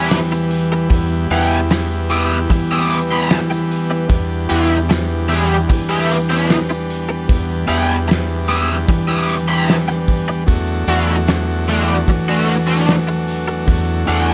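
Lightly reverberant and hypnotic, this trippy psychedelic rock excerpt puts a bright, overdriven, double-tracked stack guitar riff with flanger up front beside a round, fuzzed fingered bass. A buzzy combo organ holds vibrato chords while a detuned, warbling analog drone with chorus hums in the background, a cloth-damped drum kit thuds with a fat snare and tight kick, and a jingly tambourine sits low as the harmony shifts from Em to D/E at 10.5 seconds.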